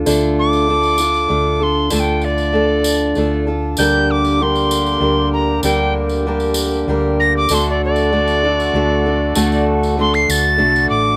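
A straight 3/4 lilt at 97 BPM, tuned to A4 = 437 Hz, carries this haunting, wistful acoustic folk fragment. Up-front picked steel-string guitar with audible finger squeak and a round, dark hollow-body electric bass sit under a distant, jingly tambourine, while a bright, airy wooden whistle plays a solo throughout with crisp chiff; the whistle and guitar both carry slapback echo. A reedy, nasal hand-pumped harmonium breathes sustained chords in the background from 3.8 s, as the harmony moves from Dm to Gm/D and then D, all captured outdoors with little reverb.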